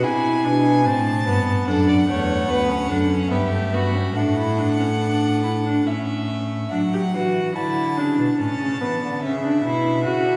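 Classical baroque-style fugue for string quartet in D major at a stately 72 BPM in 3/4, joyful in mood and cut from a longer piece, with a close, airy-bowed violin carrying the melody over an up-front viola and cello whose gut-string, period-style tone sounds rich and reedy, while a second violin with light vibrato adds a separate line from 1.7 to 6.7 s, all bathed in the wet reverb of a church.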